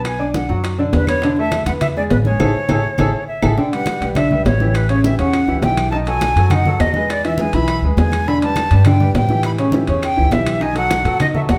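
The airy silver concert flute sits up front with expressive vibrato and a soft attack, carrying the melody between B4 and B5 throughout this festive, danceable salsa cut from a longer piece, moving at 205 BPM in A major. Beside it, a clear but worn grand piano with long sustain plays the accompaniment, also up front, while a dark, thumpy pizzicato upright bass on gut strings anchors the low end. Congas with a thick, damped skin and a compressed, saturated edge sit in the background, joined by round, low-tuned bongos played with hard hands at a very quiet level, ringing metal-shell timbales, and woody claves, also in the background. The harmony moves from Bm through E7sus4 to Amaj7, where a band accent lands at 2.4 seconds and a drum fill at 3.0 seconds leads into a new section at 3.6 seconds cycling through Em7, A7 and B7. A wet studio reverb places the ensemble further back in the room.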